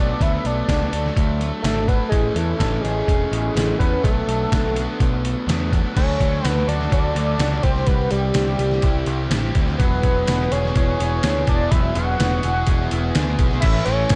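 Dark, warm production with light reverb frames this short indie rock excerpt, cut from a longer piece, at 125 BPM in A major with a carefree, upbeat feel. A hollow, bold sawtooth lead layered with a fifth carries the melody from the start, its sustained, mellow tone coloured by chorus, vibrato and a slapback echo. Beneath it, a bright, raw garage guitar and a darker, compressed overdriven guitar sitting in the background both play riffs, while a growling picked bass, overdriven and up front, anchors the low end. At 0.2 seconds a gritty, pitched-down trip hop sampler-style kit arrives up front, with a thumpy kick, medium-tuned snare, hi-hat, crash and tambourine that sound re-recorded in a small room. The harmony opens on Bm7, D and Amaj7, shifts at 6.0 seconds to Dmaj7, C and Eadd9, and settles on A at 13.6 seconds.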